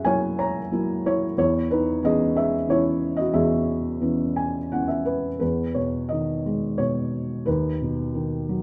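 A rubato 3/4 sway at 90 BPM carries this hopeful, relaxed fragment of lyrical classical solo piano, played on a felt-muted upright whose soft, boxy, short-sustained tone sits up front and intimate in a moderate recital-hall reverb, moving from F#7 through C#m7/E into a felt piano fill at 4.0 seconds before turning to Emaj7 at 5.4 seconds and settling on B/D# within a dark production.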